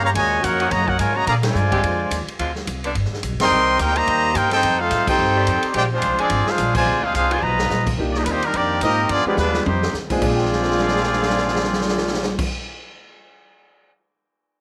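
Light studio reverb frames this energetic, swinging big band piece at 215 BPM in Bb major, with band accents and drum fills along the way. The up-front trumpet section carries the melody with a bright, soft-edged tone and light vibrato, while a tight, clear trombone section with slapback echo plays a second line over woody pizzicato upright bass and a distant, roomy drum kit with a boomy kick and rolled-off top. A vintage-toned saxophone section holds sustained chords in the background until 7.4 s, and a warm grand piano takes up the accompaniment at 8.0 s as the harmony turns mixolydian.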